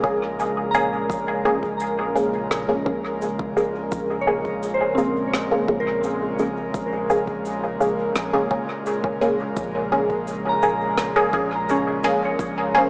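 A muted, detuned chord stab with phaser and dub echo sits up front in this meditative, spacious ambient dub excerpt, its filtered sawtooth tone decaying over a single Bbm7 chord. An airy, breathy pad with chorus holds sustained chords alongside it, while a round, soft sub bass and a deep, tape-warm electronic kick anchor the low end, and a dark, smooth cabasa and rim click with dub echo enters at 0.4 seconds. A pure, warbling FM bell plays arpeggios through chorus and tape echo from 0.7 seconds, and a moderate echo chamber reverb frames everything in a small-speaker sound.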